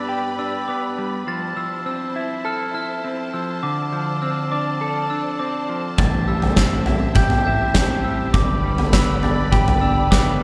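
A huge arena drum kit with a punchy kick enters at 6.0 s alongside a growling, overdriven fingered electric bass, joining a dark, clean electric guitar's arpeggios, a bell-like glockenspiel played with soft plastic mallets, and distant, lush bowed strings in this melancholic, cinematic post-rock excerpt at 102 BPM, set in the cathedral reverb of a church or concert hall as the chords move from G through Fmaj7, Dm7 and Am7 back to G.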